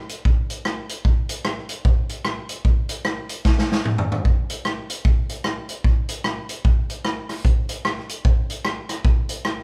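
A swinging big-band drum kit opens this driving, energetic ska excerpt at 0.1 seconds, cut from a longer piece and moving at 150 BPM in 4/4 with a swung eighth-note feel. The kit carries the whole passage, its hi-hat, rim click, snare and toms sounding acoustic and roomy, with a boomy kick underneath. The snare is medium-tuned, and the kit sits up front in the mix. A drum fill from 3.5 to 4.2 seconds marks the turn into a new section, which runs to the end of the recording. Light reverb and the feel of a band playing live together in one studio room lend the performance a natural, lively character.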